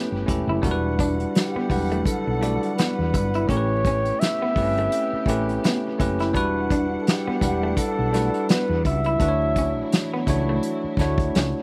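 R&B and neo-soul in E dorian at a sultry, soulful 84 BPM with a light 16th-note swing, this short cut from a longer piece is led by a breathy, whispered flugelhorn melody with vibrato and scooped notes, over a bell-like tine electric piano sitting up front and a slightly broken-up electric guitar second line tucked in the background. The flugelhorn, piano and guitar all carry a slapback echo, while a lush bowed string section holds sustained chords far back. A woody, growly fretless bass enters at 0.1 seconds and an up-front acoustic kit played with bundle sticks joins at 0.3 seconds, moving through A9, Em9 and Dmaj9 in a dry mix dusted with vinyl crackle.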